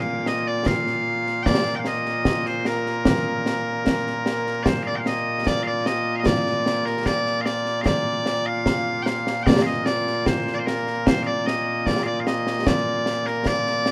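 Loud, piercing bagpipes open this short cut from a longer Scottish pipe tune, carrying a continuous solo melody up front that reaches from Bb2 to G5. A concert snare drum and concert bass drum join at 0.3 seconds, sounding acoustic, close and dry, with bright cymbals. The music is in Bb major and moves at 75 BPM in a straight 2/4, giving it a proud, ceremonial bearing. A new section begins at 4.7 seconds and carries the pipes and drums through to the end at 13.9 seconds. Light reverb lends the recording a modest sense of space.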